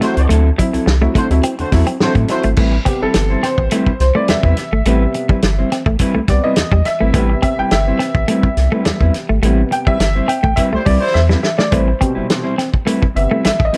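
Funk in A dorian at 105 BPM, this driving, sly cut from a longer piece rides a straight 4/4 groove under a dark production with light reverb and a small-room feel. A tight-booth soul drum kit with a medium-tuned snare and rolled-off top sits up front beside a round, deep analog bass that enters at 0.2 seconds with a fast attack and sustained notes. Two clean, fingered electric guitars fill the middle: a mellow one comping, and a compressed semi-hollow one repeating a riff. A clear, woody upright piano, worn and slightly detuned with slapback echo, punches out stabs and takes a solo from 2.6 seconds as the harmony moves from D9 to Am9. A distant, mellow horn section with light vibrato plays a second line at the opening and returns briefly around a band accent, which is capped by a drum fill at 11.2 seconds.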